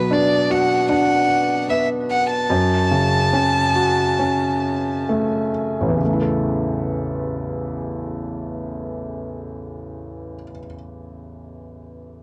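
A close, airy-bowed solo violin with light vibrato and a soft, sul tasto touch carries the tender melody from B4 to A5 over the opening, ending at 5.0 s, while a felt-muted upright piano, mellow and vintage in tone, accompanies up front until 12.2 s. This emotional pop fragment in A major moves in a straight 4/4 at 63-78 BPM, slowing over the first 6 seconds as the harmony passes from Bm to F#m before settling on A. Both instruments carry a cassette-tape character, and light reverb gives the intimate home recording a hushed, personal feel.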